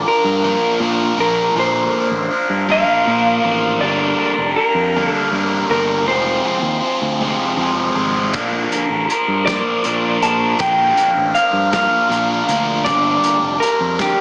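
Carefree and upbeat, this indie rock excerpt rolls along in a lilting 6/8, moving from Bbmaj7 through Gm7 and Fm to Bb before returning to Gm7. The melody comes from an electric guitar through a small old amp, its warm, slightly broken-up, compressed lo-fi tone bathed in spring reverb. Sitting up front, a bright, raw garage guitar plays a picked riff with a phaser shimmer, while a sludgy distorted guitar joins at 0.4 s with a second riff dressed in subtle chorus and digital delay. Underneath, a growling fingered electric bass adds a gritty, amped edge to the low end. At 8.3 s a loose indie drum kit enters with a punchy kick, medium-tuned snare and hi-hat in a pumping studio room, and the whole mix carries a small-speaker character in moderate ambience.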